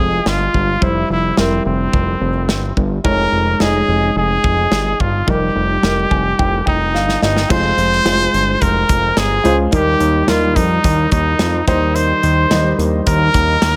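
Light reverb and studio ambience frame this dramatic, bittersweet piano-driven pop excerpt in F minor at 108 BPM, where an up-front, bright trumpet carries a smooth solo melody with vibrato over dark, woody upright piano accompaniment, a fat, detuned sawtooth analog bass, and an acoustic small-room drum kit with a tight kick that enters at 0.3 seconds, with a piano fill from 5.8 seconds and a drum fill at 6.9 seconds leading into the second section.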